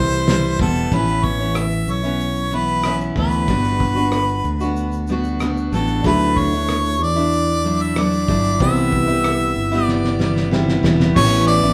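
A straight 4/4 groove at 94 BPM carries this sunny, carefree acoustic pop excerpt, with a cloth-damped, thuddy drum kit of fat snare, tight kick, rim click, shaker and dark crash adding a muffled, lo-fi grit, while a growly fretless electric bass holds the low end and a picked steel-string acoustic guitar sits up front. A clear harmonica with light vibrato takes the melody over chords moving from Cmaj7 through Aadd9, Gmaj7 and Dadd9, and a dark, woody upright piano returns very quietly at 6.0 seconds. The band plays live in one room with a wet large studio reverb, and a drum fill at 9.9 seconds rounds off the phrase.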